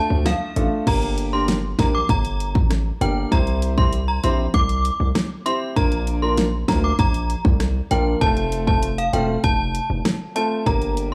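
A straight, bouncy dancehall groove comes from an overdriven pop drum kit that arrives at 0.3 s, with a punchy kick, fat snare, hi-hat, rim click and crash sitting up front, while a hard-hitting 808-style bass, heavy and saturated with a noise layer, enters at 0.1 s to anchor the low end. A clear grand piano with audible action noise supplies intimate accompaniment over a Gm, C, Bb, F progression. On top, an inharmonic FM synth chime carries the sultry melody, its vintage, warbling tone thickened by ensemble chorus and tape echo, in this short clip cut from a longer piece.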